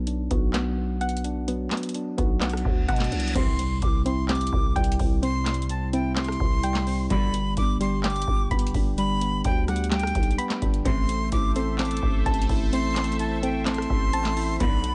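Hip hop and trap in a half-time feel, melancholic and eerie, built on a mellow tine electric piano, soft round plucked arpeggios with chorus and delay, a growling 808-style bass and a booming analog drum machine with deep kick, tonal snare, metallic hats, handclaps, rim clicks and crash, roughened by vintage 12-bit sampler grit. A reverse cymbal leads into an electronic impact at 3.4 seconds, where a breathy jazz flute with vibrato and delay enters as a second line while brief bowed stabs from a lush symphonic string section sit in the background. From 10.9 seconds a sweeping, resonant pad with a filter swell adds sustained chords, and the mix stays dry with a rolled-off top end.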